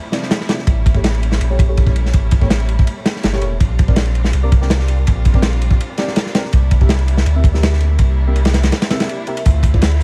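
Nostalgic and raw, this drum and bass and jungle excerpt runs at 164 BPM with a crunchy, gritty breakbeat kit of tight kick, dark ride and snare up front, a saturated sub bass entering at 0.7 seconds, deep mellow chord stabs soaked in chorus, phaser and dub echo, rich bowed strings sustaining chords beneath, a barely audible downlifter at the start, a faint high-passed hi-hat and snare layer at 9.5 seconds after a brief break, and vinyl crackle over chords moving from Dm9 through A7b9, Bb69 and C7.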